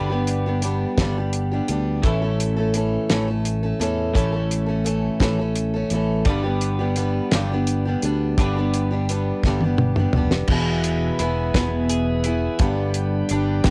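Opening with a boxy, picked acoustic archtop guitar up front, a clean, compressed twelve-string electric guitar riff with spring reverb and cassette tape tone in the background, and a round, dark fingered electric bass, this hopeful, jangly folk rock and heartland rock excerpt in a slow 6/8 at 57 BPM moves between G, A and E chords; it adds a dry, damped 70s drum kit with a fat snare and tight kick at 0.3 seconds, plays a drum fill at 9.4 seconds, and brings in a shouting tonewheel organ on sustained chords through a slow rotary speaker at 10.5 seconds, heard as a home recording on cassette with little room reverb.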